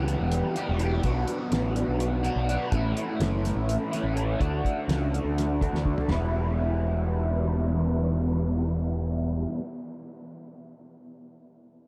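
Psychedelic rock in a straight 7/8, mysterious and trippy, this short cut from a longer piece sets a double-tracked, overdriven electric guitar riff, carried through a phaser and a filter sweep, over a growling, picked electric bass with its own overdrive, both up front. A cloth-damped, thuddy drum kit with a fat snare, tight kick and dark, rolled-off top plays hi-hat, kick, snare and toms, closing with a fill from 5.7 to 6.1 s and dropping out at 6.2 s. A huge ambient reverb soaks the whole mix in a dreamy haze as the chords cycle from Em through Bm, A and D before returning to Em.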